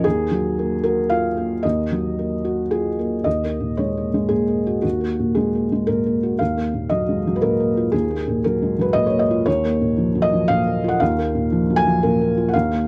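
A felt-muted upright piano plays alone for the full 12.9 seconds in this wistful, intimate neoclassical minimalist fragment in Eb minor, tuned to A4 = 436 Hz, moving in a rubato 3/4 around 116 BPM from Ebmadd9 through Gbadd9/Eb and back before settling on Bbm/Eb, its dark, thick-felt tone and audible action noise captured up front in a dry, close 1970s-style studio sound, with a new passage beginning at 3.3 seconds.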